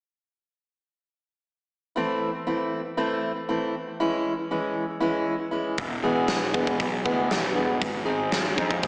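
In a straight four-beat pulse, this dark, cathartic quiet-loud alternative rock fragment opens at 2.0 seconds with a full-bodied jumbo steel-string acoustic guitar, up front, fingerpicking arpeggios through tape echo over a progression of Am, C#m, E and G#. At 5.8 seconds a huge arena drum kit enters with a fat snare, punchy kick and hi-hat in a big room, joined by a round, overdriven fuzz electric bass. A wet recital-hall reverb casts the whole over a big arena sound with a small-speaker edge.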